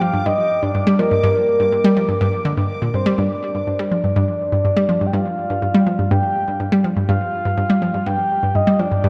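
Drenched in a long plate reverb and heavy echo, this excerpt of ambient, sequencer-driven space music moves at 123 BPM in G minor with a mysterious, cosmic mood. Up front, a bright, detuned analog pluck repeats a low riff with a snappy filter attack, while a dark, round synth lead layered with a sub octave carries a sustained, vibrato-tinged melody above it; both are coloured by chorus and tape echo. A bubbling, resonant texture of random filter steps hovers high and mellow over the opening G minor chord until 3.2 seconds, when the harmony settles onto a bare G5 for the rest of the excerpt.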